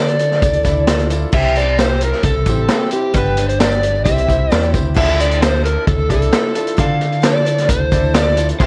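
A straight 4/4 pulse at 132 BPM drives this wistful, dusty folk and heartland rock excerpt in D minor, where a dark, overdriven slide guitar with slapback echo carries the melody over a shimmering, octave-doubled twelve-string acoustic and a warm, natural baby grand piano in the background, a round, amped electric bass, an up-front vintage kit with a punchy kick and rolled-off top entering at 0.1 seconds, and a very quiet, jingly tambourine from 0.2 seconds, as the chords cycle through Dmadd9, C and G beneath light reverb and the warbling pitch drift of worn cassette tape.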